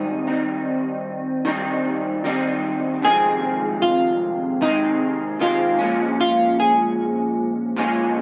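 Indie pop at 76 BPM in a hazy, lonely mood: this short fragment of a longer piece pairs a dark, clean vintage hollow-body jazz guitar, picking the melody through analog chorus and slapback echo, with a slightly broken-up, lo-fi electric guitar through a small old amp, picking compressed accompaniment through its own analog chorus and vibrato; both sit up front in moderate spring reverb as the harmony moves from a rootless Abmaj7 to Fm7 at 3.0 seconds and Bbm7 at 5.8 seconds.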